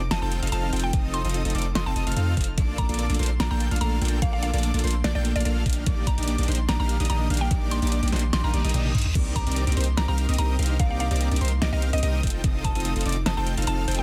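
A dense, heavily limited modern master in a digital ambience gives this dreamy, bittersweet future bass piece a polished, crowded sheen, moving in a half-time feel. A huge, thick supersaw carries the riff with sidechain pumping and delay, while a deep, sine-toned 808-style bass sits up front with long, decaying notes and its own pumping. A woody, round mallet-like pluck states the melody through chorus and delay, and an airy lead traces high arpeggios in the background. Underneath, a tine-like, nasal thumb-piano pluck adds very quiet arpeggios, and an ethereal pad holds sustained chords. The overdriven pop kit brings a fat snare, metallic hats, crash and toms, and an up-front, knocking electronic kick enters at 0.9 seconds. A reverse cymbal at 8.5 seconds leads into a drum fill, and at 9.2 seconds the harmony moves from Ebmaj7/Bb to Cm9 before returning to F7.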